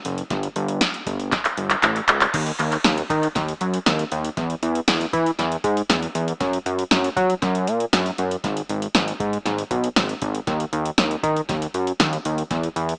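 An electro analog drum machine opens this upbeat, nostalgic synth-pop excerpt at 118 BPM in a straight 4/4, with its deep kick, punchy snare, handclaps, metallic hi-hats and crash cymbal sitting up front with a tape-tinged echo and a short room on the snare, claps and hats. A fat, detuned sawtooth bass joins at 0.1 seconds, thick and sustained with a fast attack and a filter sweep, moving between F#1 and F#3. After a drum fill from 1.3 seconds, a new section begins at 2.3 seconds, all within an echo-heavy mix of light reverb and digital ambience that has a small-speaker character.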